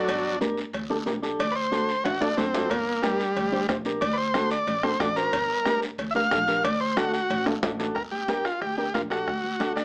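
An overdriven combo organ leads this passionate, danceable cumbia fragment, its buzzy vintage tone carrying heavy vibrato up front as it solos through the first 8.0 seconds. A dark, clean, compressed electric guitar and a woody pizzicato upright bass support it. Ringing high-tuned congas sit in the background alongside a raspy, close guiro, while metal-shelled cowbell and timbales play until 7.9 seconds and a soft-beaten bombo enters at 2.7 seconds, all heard in a small room through a small-speaker sound.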